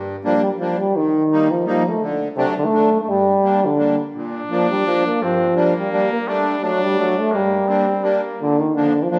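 Jolly and festive, this brief alpine folk dance excerpt in G minor moves at 170 BPM in a straight 3/4, with a reedy, sweet accordion in light tremolo tuning supplying the accompaniment and a warm, up-front euphonium carrying the melody with light vibrato from 0.3 seconds, while a clear, classical-style trumpet adds a quieter second line from 4.2 to 8.4 seconds, all set in a wet recital hall reverb over chords that circle through Gm, Eb, D and Bb.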